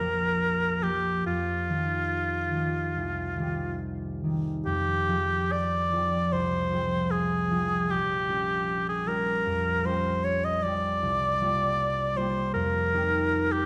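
Bathed in the wet reverb of a recital hall, this wistful, hazy impressionist classical fragment from a longer piece pairs a warm, close-miked oboe singing the melody with vibrato against a ringing, thumb-plucked concert harp accompaniment, both up front and drifting in a free rubato over lush minor-ninth and suspended harmonies.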